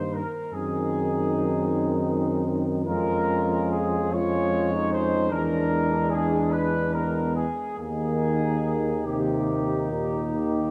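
Classical, hymn-like brass band music in a tender, rubato 12/8, cut from a longer piece, where a dark, vintage-toned trumpet section carries the melody up front over a mellow flugelhorn second line with light vibrato, a clear but distant trombone, a smooth-topped euphonium and a warm, vibrato-tinged tuba bass, all five playing throughout the 10.7 seconds in a moderate concert hall reverb as the harmony moves toward a closing Eb chord.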